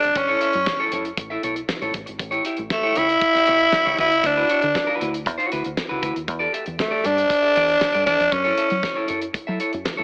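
A growling tenor saxophone leads this sultry, glamorous disco cut at 118 BPM in a straight 4/4, its raspy, gritty melody sitting up front with vibrato and a slapback echo before it drops out at 9.1 seconds. Beneath it, a clean semi-hollow electric guitar plays picked accompaniment with a warm hollow-body tone, while a deep dub fingered electric bass supplies a dark, round, punchy, foam-muted low end. A damped 70s drum kit of hi-hat, kick and snare keeps the beat, with a fat snare and tight kick treated with gated reverb. The harmony moves through F#m7, A7, D69 and Em7 before returning to F#m7. Light reverb and an AM radio character give this fragment of a longer piece a broadcast-like sheen.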